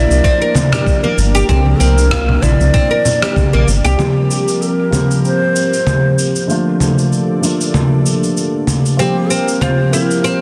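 A huge ambient reverb surrounds this dense, heavily limited excerpt of organic downtempo, peaceful and warm at 96 BPM in 4/4 with a swung sixteenth-note feel. A breathy, hollow low ney carries the melody throughout, its soft-attacked tone echoed by delay, while a detuned analog pad holds smooth, full-bodied chords in the background with chorus and sidechain pumping. A bright, woody oud plays plucked arpeggios with delay until 4.0 seconds and returns at 9.0 seconds, joined early on by a round, deep analog bass up front, saturated and pumping, along with a thumpy, gritty electronic kick and soft-handed vintage congas set back in the mix. Gritty sampler-style cabasa, conga and rim click stay up front across the piece, the snare lightly clipped. From 4.0 seconds a felt-muted upright piano enters, intimate and dark with audible action noise, a filter sweeping over it under delay and pumping, while a very quiet quartz singing bowl rings on G4 with slow beating. 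The harmony moves from Bb6 through C7sus4 and Bbmaj7 before returning to C7sus4.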